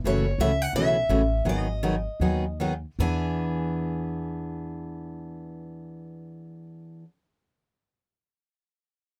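A woody, thumpy upright bass opens this short excerpt from a longer piece of jazz manouche, joined a tenth of a second later by two picked steel-string acoustic guitars. The mood is charming and swinging, with a brisk tempo between 147 and 173 BPM in 4/4, a lilting swing on the eighth notes, and a centre in E mixolydian. For the first 3.0 seconds the pulse slows as the chords move from F#m7 to G#m7, before the second section settles on E7. The higher guitar carries the melody with a boxy parlour tone and audible finger squeak, while the other guitar, full-bodied and up front, supplies the accompaniment with the crisp brightness of fresh strings. Beneath them the pizzicato bass on gut strings sits dark and close, and light reverb with detailed close microphones keeps the small acoustic group intimate.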